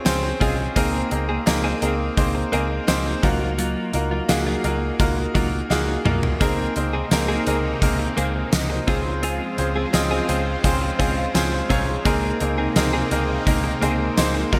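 A bright, polished 1980s-style digital production sits in a lush hall reverb, giving this glossy, nostalgic pop fragment a shimmering sense of space. A brilliant baby grand piano carries the accompaniment up front, its action noise audible and its notes ringing with long sustain, while a gated 80s drum kit drives the groove with a fat snare, punchy kick, bright cymbals, hi-hat, tambourine and toms in an airy stone room. Beneath them, a dark, foam-muted fingered electric bass gives a round, amped low end, and a clean, compressed electric guitar recorded direct plays a picked riff in the background through analog chorus and digital delay. After a drum fill at 5.7 seconds, a thick, detuned unison pad of sawtooth and square waves with a sub octave fades in at 6.4 seconds, adding slow-blooming sustained chords treated with chorus and phaser. The harmony moves through lush major-seventh and add-nine chords, and the piano steps forward with a fill at 10.6 seconds before the passage is cut off.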